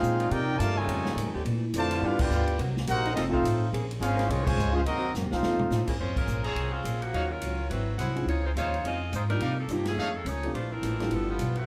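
Big band swing in Bb minor at a brassy, swinging 211 BPM, cut from a longer piece: a trumpet section with vibrato carries the melody over a trombone second line and soft, clear saxophone chords in the opening half, then a bright saxophone section takes the tune at 6.0 s with tight trumpet stabs and a dark, mellow grand piano entering at 8.2 s, driven throughout by woody pizzicato upright bass, a picked acoustic guitar in the background and a punchy big-band drum kit with a short fill, heard from further back in a reverberant club room.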